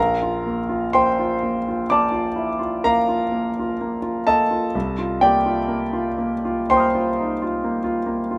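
Dreamy and luminous, this brief fragment of impressionist classical music features a lone grand piano playing in a flexible rubato over an unusual 5/4 metre, spanning from Bb1 in the bass up to F6. The piano sounds intimate and up front, with long sustain and audible action noise, set in light reverb. The harmony rests on a Bb6 chord before shifting to Cm11 at 4.7 s.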